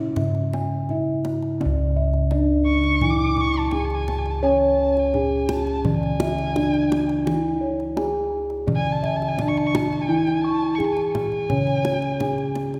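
A steady, straight 4/4 pulse at 85 BPM carries this hypnotic, shimmering Javanese gamelan passage in C# pelog, cut from a longer piece, where a ringing bronze metallophone leads the melody over a softer, mid-forward metallophone accompaniment, round beating bossed gongs in the bass and an airy higher set of bossed gongs playing arpeggios, all struck with padded mallets or beaters for a mellow tone. A kendang adds tight, close and dry strokes with hard hands, and from 2.7 seconds a dark erhu enters as a second line, bowed by one player with vibrato, portamento and a soft attack. The ensemble is heard from further back in a wet concert hall, though the lead metallophone itself carries a boxy small-room colour.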